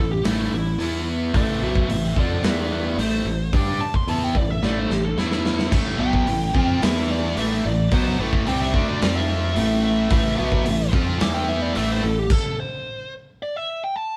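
Hard rock excerpt with a driving, menacing feel, where a bluesy overdriven lead guitar solos over crunchy and bright overdriven rhythm guitars (one with spring reverb), a punchy fingered bass and a big, up-front drum kit with a tight kick, a double-tracked high-gain guitar joins at 5.7 s, and everyone but the lead drops out at 12.3 s, all in a moderate stone room with a live-band sound.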